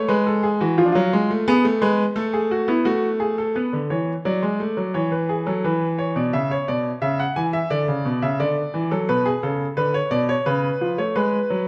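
Elegant and lively, this short piece cut from a longer work is a baroque-style two-part invention for solo baby grand piano at 87 BPM in a straight 4/4, tuned to A4 = 442 Hz. The bright, brilliant piano sits up front with an open tone and long sustain, spanning B2 to G#5 over a harmonic path that moves from Eadd11 through F#m/A to Bm near 3.5 seconds and closes on C#7 around 10.5 seconds. Close, detailed microphones capture the instrument in a moderate recital hall reverb of about 1.5 seconds.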